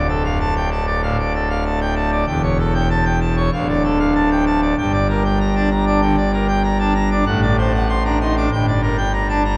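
A full pipe organ sounds from the first moment, its mixture stops giving the solo instrument a brilliant, majestic blaze with a romantic voicing. This is a classical organ toccata in a straight four-beat metre, and its mood is both majestic and jubilant. The organ sits up front and spans from deep pedal notes to a high treble, carrying the whole 9.6-second fragment of a longer piece by itself. The harmony moves through a minor-key progression, from the home chord to a dominant seventh and back, then on to a subdominant minor chord around 4.8 seconds, before passing through a D7 over A and arriving at Gm at 8.5 seconds. A long church reverb surrounds the instrument, and the production leans dark and warm.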